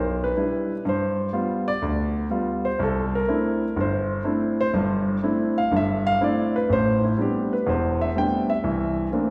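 A relaxed, sophisticated swing at 123 BPM in 4/4 with a lilting 68% eighth-note feel carries this short solo jazz excerpt in C major, where an intimate, up-front concert grand piano with deep bass and audible action noise spans E1 to G5 across 9.3 seconds, moving through Em7, G7 and C69 before Am11 arrives at 6.7 seconds and C13 closes, all bathed in a wet reverb with a 1.9 second decay that evokes a church or concert hall.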